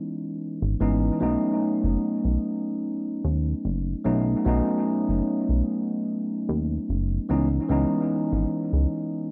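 A slow 4/4 pulse carries a light swing on the sixteenths, giving this melancholic, nostalgic vaporwave fragment a gently loping feel. A tine electric piano sits up front as the accompaniment, its clean, warm tone heard as if through built-in speakers, touched with subtle chorus, vintage 12-bit sampler grit and tape echo. A chorused synth bass joins at 0.6 seconds, a retro, glossy voice blending pulse wave and sawtooth with pulse-width modulation, a filter pluck on a fast attack, and mellow sustained notes that hold the low end until 8.9 seconds. The harmony settles on C#m9, drifts to B9 and lingers there before returning to C#m9 at 7.3 seconds. A moderate plate reverb and an echo-heavy mix wrap the short passage, cut from a longer piece, in a hazy, dreamlike space.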